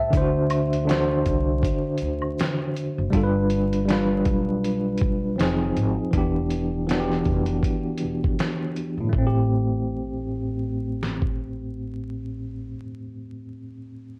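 A worn, slightly out-of-tune tine electric piano opens this hazy, melancholic lo-fi hip hop excerpt, sitting up front through a combo amp with light overdrive and a fast tremolo. Almost at once a gritty, compressed sampler-style drum kit arrives, with a thumpy kick, a fat snare and hi-hat re-recorded in a large room, alongside a woody, growly pizzicato upright bass. A close tube shaker and woodblock add a light acoustic layer before dropping away at 3.0 seconds, while the swung groove carries the chords from D7 and G7 through Fm7 and Em7 to a closing Am7. The drums fall silent at 11.4 seconds, leaving the bass and piano, which lingers alone until 14.2 seconds. Over it all hangs a moderate studio reverb and the patina of old cassette tape, with vinyl crackle and a warbly pitch drift.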